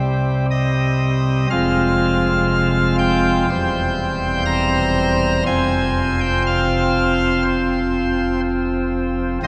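A classical chorale-style excerpt for solo pipe organ, reverent and serene, moving in a free, rubato 4/4 through a short chord progression from Cm to Fm, C/E and F5 over 9.5 seconds. The organ speaks on a nasal cornet stop with baroque voicing, its pipes showing a touch of chiff and a tremulant as it sits up front across a range from E1 to Bb5. A cathedral reverb with a 7.3-second tail surrounds the sound in a long, resonant bloom.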